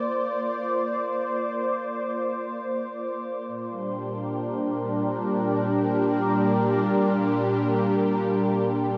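Peaceful and weightless, this ambient passage in free time and Bb major, tuned to A4 = 438 Hz, sets a warm, smooth analog pad up front holding a soft-attack, detuned sawtooth Bbadd9 chord with chorus and a moving notch, while a pure, glassy glass harmonica sits in the background, close-miked and dry, and fades out across the 9.0-second fragment, all inside a dreamy, cassette-tinged mix soaked in huge reverb.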